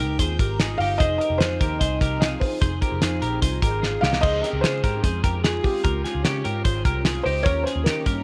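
A felt-muted upright piano carries the melody with a soft, intimate tone, audible action noise and tape echo, entering at 0.8 seconds over clean twelve-string electric guitar arpeggios, a round foam-muted picked bass, a thuddy cloth-damped drum kit with a fat snare and a drum fill at 3.8 seconds, a ringing vibraphone second line and a swirling phased string machine in the background, in this bright, breezy jangly indie pop excerpt at 149 BPM moving from Abmaj7 through Fm7 and Dbmaj7 to Eb7.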